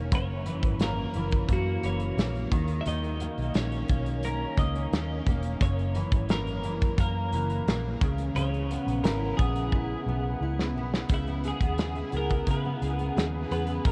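A bright, twangy twelve-string electric guitar carries the melody through lush chorus and delay, floating over a picked dreadnought acoustic guitar with audible finger squeak, its own ensemble chorus and vibrato adding shimmer, while a dark, round, foam-muted vintage bass and a loose, small-room indie drum kit with a tight kick hold a straight 87 BPM groove in C# dorian. This lonely, hazy bedroom pop excerpt moves through F#7, D#5 and C#m7 chords, with a drum fill from 9.7 to 11.1 seconds leading into a new section. The whole mix is dreamy and cassette-tinged, soaked in a huge ambient reverb.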